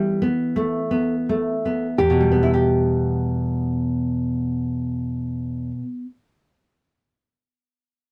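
Two fingerpicked nylon-string guitars open together in a yearning, solemn romantic duo in rubato 12/8, the small-toned melody guitar singing above a dark, woody, full-bodied accompaniment on old strings that sits up front and reaches deep into the bass, slowing through the first 2.0 seconds before settling onto a minor chord, with the melody falling silent at 5.7 seconds and the accompaniment at 6.3 seconds in a modest booth ambience, all cut from a longer piece.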